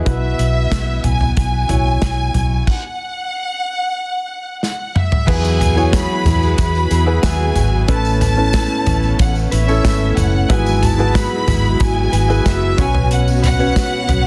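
The recording sounds dense and heavily limited, with light reverb and a small-room ambience around this hopeful, warm piece of piano-driven pop in a straight four. A concert grand with audible action noise and deep bass carries the accompaniment over a dark, foam-muted fingered electric bass that sits up front, while a natural country drum kit with a punchy kick and dark cymbals drives the pulse. Above them a lush, distant violin section sings the high melody with soft-attack vibrato, and a smooth-topped string section holds sustained chords in the background. The band halts at 2.7 seconds, a drum fill starts at 4.6 seconds, and at 5.3 seconds the music opens into a fuller passage where a clean, direct-recorded electric guitar enters with a compressed, picked riff treated with spring reverb, joined by a jingly, band-limited tambourine low in the mix. Suspended and add9 chords give the harmony an open, yearning colour as this fragment of a longer piece comes to an end.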